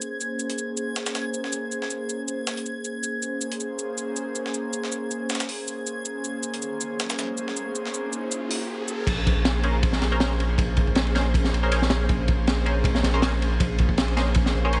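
Drum and bass with a jungle edge, this atmospheric, nostalgic cut opens on an airy, breathy pad holding a minor ninth chord, its detuned layers softened by chorus and the grit of an old 12-bit sampler. A pitched-up, sampler-style breakbeat of hi-hat, shaker and high-passed snare sits up front, sounding compressed and tape-warm, while a reversed, granular texture shimmers high above in its own reverb and a filter sweep moves across the pad. An electronic riser enters at 6.7 seconds, and at 9.1 seconds the drop arrives with a crunchy acoustic breakbeat kit whose tight kick, high-tuned snare, and dark ride and crash cymbals have a saturated, rolled-off character. A deep, thick sub bass with tube saturation anchors the drop, and from 9.6 seconds a nasal, band-passed chord stab cuts through with phaser, chorus and dub echo trailing behind it. The mix sits in a small room with light reverb, and its top end stops short of 10.7 kHz.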